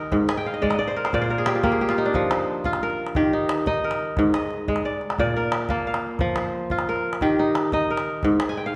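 West African traditional music, this short excerpt cut from a longer piece has a hypnotic, flowing mood in a straight 12/8 metre. The kora leads, playing ringing, crisp arpeggios up front across a broad range, its fingerpicked tone acoustic and warm. A calabash provides the percussion beneath, sounding deep, band-limited and vintage, and sitting well behind the kora in level. The kora adds a fill from 0.3 to 2.2 seconds and another at 8.5 seconds, while the harmony moves through chords such as Abmaj9#11, F5, Eb and Bb before settling on Abmaj7(no3). A generous recital hall reverb surrounds the instruments, giving the performance an airy, resonant space.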